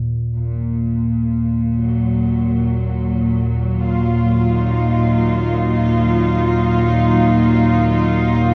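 In free time, this dark ambient drone in Eb minor, tuned to A4 = 438 Hz, opens on a deep, rumbling, ominous synth drone with a nasal, detuned ring-modulated edge and its own built-in reverb, sitting up front from the very start. At 0.4 seconds a rich studio cello section joins with bowed, sustained chords on an Ebmadd9, its earthy, biting tone softened by light vibrato and a smooth top. The whole cavernous passage is bathed in a huge, wet reverb and the warbling pitch drift of worn cassette tape, and it is cut from a longer piece.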